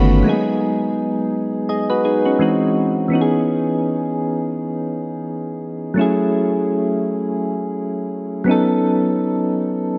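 Sensual and longing, this short R&B excerpt moves at 84 BPM in 4/4 with a gentle swing on the sixteenths. A single part carries it: soft electric-piano-like synth keys, sitting up front and spanning D#3 to D#5 as accompaniment across the full 10 seconds. Their tone is round and mellow, with a fast attack that decays gently and a filter sweep shaping the sound, while chorus and tremolo add a shimmering motion. The harmony drifts from G#m7 through G#7b13 and C#m9 to F#m9, arriving on B9 at 8.5 seconds. A lush hall reverb with a long tail soaks the whole mix, giving it a dreamy, floating atmosphere.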